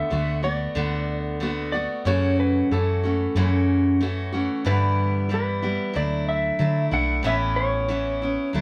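A band playing live in one room fills a moderate studio reverb in this short cut from a longer folk rock and heartland rock piece, moving at an open-road, hopeful 92 BPM in a straight 4/4. An up-front, dark, picked steel-string acoustic guitar carries the accompaniment while a round, hollow-body short-scale electric bass, fingered and amped, holds the low end from 0.1 seconds. Over them, a compressed, slightly broken-up electric slide guitar sings the melody as the harmony moves from D6 and F#m7 into a second section at 4.6 seconds through G6, Dadd9 and Aadd9.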